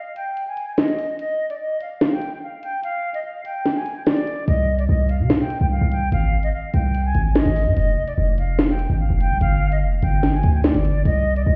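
Dark, menacing drill hip hop in a half-time feel, cut from a longer piece, where a pure, expressive silver concert flute carries the melody with vibrato and a tape echo from the opening moment, while the drill kit's sharp snare and bright hats sit up front from 0.2 seconds. At 4.5 seconds a hard-hitting 808-style bass arrives, punchy and heavy with a fast attack and a decaying sine tone layered with noise, moving through minor and open-fifth harmonies. The whole track sounds muffled, as if heard through a wall, with stone room reverb and a small room ambience.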